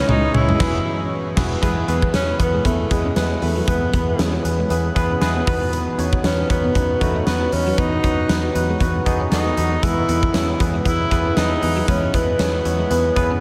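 Nostalgic and uplifting, this 1980s-style pop excerpt opens with a drum fill from a big, fat-snared rock kit and a band accent, while a breathy, whispered tenor saxophone with light vibrato and analog delay carries the melody over a worn, slightly out-of-tune tine electric piano (which adds a fill at 4.7 seconds), a round foam-muted picked bass and a very quiet, slightly broken-up guitar riff, all bathed in a dreamy mix soaked in huge ambient reverb.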